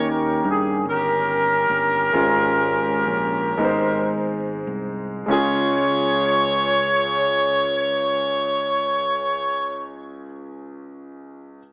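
Slow gospel in 6/8 and D-flat major, reverent yet jubilant, this short cut from a longer piece opens with a slowing tempo as a mellow, vintage jazz-style horn section with light vibrato and slapback echo carries the melody up front until 9.8 seconds, over a clear concert grand piano with deep bass and long sustain that plays on to 11.6 seconds, and a round, punchy fingered electric bass, all bathed in lush hall reverb with an AM radio sound.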